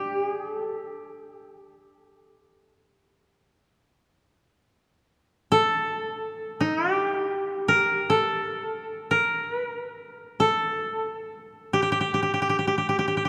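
In free time, this austere, meditative excerpt of Japanese chamber music features a solo koto plucked with fingerpicks, its woody, up-front tone moving between D4 and Bb4 in G hirajoshi for 13.3 seconds, set within the long, wet tail of a church reverb.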